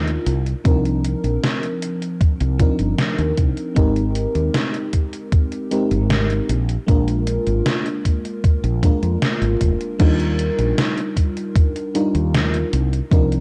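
Dark, cassette-tape production with little reverb frames this dreamy, woozy vaporwave excerpt, where a lush FM electric piano with a soft pad layer, chorus and tape echo drifts through Cm11, Abmaj9 and Bb7 over a round, woody fretless bass with tube saturation, while an overdriven 80s drum machine with gated reverb on its snare, hi-hat and crash joins at 0.1 seconds and a thumpy, up-front electronic kick enters at 0.7 seconds, before a second section opens on Ebmaj9 at 10.0 seconds.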